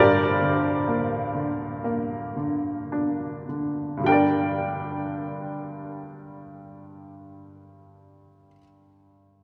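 Classical solo piano in G minor, reflective and wistful, drifts in a free rubato between 53 and 68 BPM, with a clear, natural baby grand sitting up front across its range from G2 to G5, its short sustain bathed in the long wash of a vast, echoing cathedral as it slows through its opening 4.1 seconds in this brief fragment from a longer piece.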